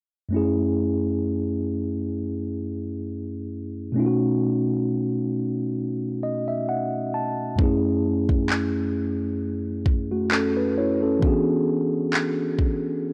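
Contemporary R&B in F# minor at a slow, sensual 66 BPM with a light 16th-note swing, this longing excerpt centers on a mellow, clean tine electric piano up front, moving through F#m7, B7 and E7 and playing a fill from 5.8 to 7.6 seconds before an electronic drum kit of handclaps and soft kick enters at 7.6 seconds, all within a dry, gritty recording touched by light digital reverb.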